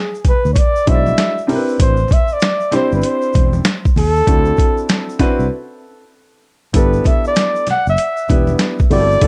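Cool and mellow, this jazz-hop excerpt opens at 0.0 s with a breathy, close-miked flugelhorn playing a jazz-style solo with scooped notes, set in plate reverb and analog delay. A gritty boom bap sampler kit with a thumpy kick and vintage 12-bit character enters at 0.2 s. It is soon joined by a growly, punchy fretless electric bass at 0.5 s and a woody upright piano with its own plate reverb at 0.9 s, while a band-limited tube shaker and congas sit in the background. The swung groove pauses for a brief break at 5.5 s, and the production has a dark, lightly reverberant feel.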